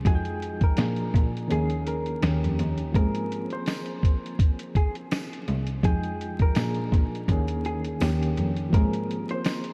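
Nostalgic and cosy, this lo-fi hip hop excerpt sets soft, round electric-piano-like synth keys with chorus, tremolo and cassette-tape colour over a muffled, up-front sampler-style drum kit of finger snaps, hi-hat, thumpy kick and snare, whose kick drops out from 1.5 to 2.9 seconds, while a distant bowed cello carries the bass with vibrato and portamento, a dark, clean hollow-body jazz guitar plays the melody through subtle chorus and diffuse delay, a jingly tambourine joins in the background at 3.7 seconds, and the whole dreamy mix is soaked in cathedral reverb and vinyl crackle.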